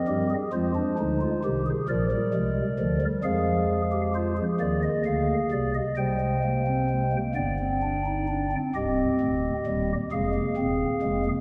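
A soft, hollow stopped-flute pipe organ plays alone, up front with a distinct chiff, in this driving yet contemplative fragment of a baroque-style four-part classical fugue in 6/8 at 44 BPM (dotted quarters), settling into C minor from 3.2 s, spanning C1 to G5 and moving through chords such as Fm, Bb7 and Gsus4/C to G before a new section begins at 8.7 s, all bathed in a lingering concert-hall reverb.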